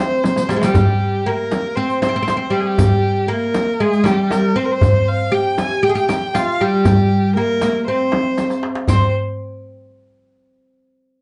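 Arabic maqam ensemble music with a hypnotic, longing mood, taken from a longer piece and moving in a straight, even four. A mellow, woody fretless oud carries the melody up front, its plectrum-plucked double strings giving a deep, acoustic voice. Behind it a single bowed violin plays a second line with a rich, nasal, focused, slightly boxy tone and vibrato. The percussion gathers from the start: bright riq jingles in a live room, joined at 0.2 s by a crisp metal-shell darbuka and a large frame drum played with soft hands, heard close. Drum fills mark the opening moments and lead into a new section at 8.9 s. The whole ensemble sits a little back in a reverberant studio, with a softened, rounded top end.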